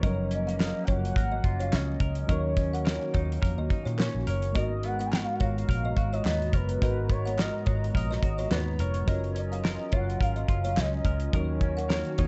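A hazy, mellow stretch of indie bedroom pop opens at 106 BPM in G# dorian, with a lightly swung sixteenth feel. The damped 70s drum kit sits up front with a fat snare and tight kick, joined by a round, foam-muted electric bass. Over them, a velvety sawtooth synth lead carries the melody with vibrato, subtle chorus and slapback echo, while a woody, thumb-plucked kalimba rings out a second line. A reedy electric piano with fast tremolo and cassette-tape colour, and a clean, compressed semi-hollow guitar with warbly pitch drift, fill in the accompaniment. A flute-like pad holds soft sustained chords in the background, and a faint group handclap arrives at 0.6 seconds and drops out at 12.0 seconds. The chords move from F#maj7 through D#m7 and G#m9 inside a small, dark room sound that is rolled off at the top, and the piece is cut from a longer work.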